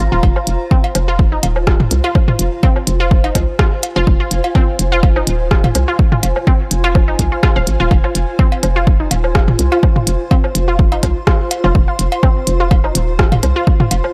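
Sparse and clinical, this slice of minimal techno sets an overdriven, punchy kick up front beside a hollow, bouncy FM bass, with clicky hi-hats and rim clicks from a small-room click kit, layered overdriven electronic cowbell, woodblock and toms, a squelchy, detuned sawtooth blip riff treated with chorus, phaser, filter sweep and dub echo, and a cloudy granular pad drifting on its own reverb, the bass, riff and pad all breathing with sidechain pumping.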